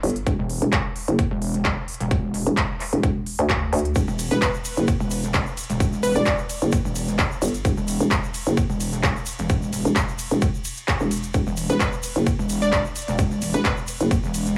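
Bouncy and aggressive, this bass house cut at 130 BPM in E minor with a light 16th-note swing pairs a hollow, knocking FM bass with tube saturation and a heavy, detuned pluck wobble bass with chorus, both up front and pumping against a punchy, overdriven electronic kick and a big-room kit of handclaps, crisp hats and ride cymbal, while a grainy tube shaker joins in the background at 4.0 seconds and a catchy, full-bodied plucky unison lead with digital delay appears at 4.3 and 11.7 seconds, all in a close, nearly dry small room.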